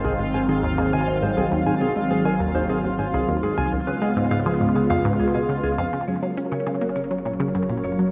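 A squelchy, detuned sawtooth pluck sits up front, playing a resonant blip riff through chorus, phaser and delay, its moving notch and short decay giving each note a juicy snap. This short cut from a longer piece of ambient, sequencer-driven space music moves at 102 BPM in a straight 4/4 and feels hypnotic and cosmic. Also up front, a swirling analog pad holds sustained sawtooth chords that slowly evolve under phaser and chorus. Beneath it, a dark, clean, fingered electric guitar plays mellow arpeggios through delay, a bubbling texture of random resonant filter steps adds its own built-in reverb, and a wave-folded analog drone sits in the background as the bass. A filter sweep runs over the synth arpeggio sound as the harmony moves from Ab to Db7 at 3.7 seconds. At 6.1 seconds the chord shifts to Gb and a soft electronic shaker and claves enter, re-recorded in a large room. A lush hall reverb with a 2.5-second tail bathes the whole mix.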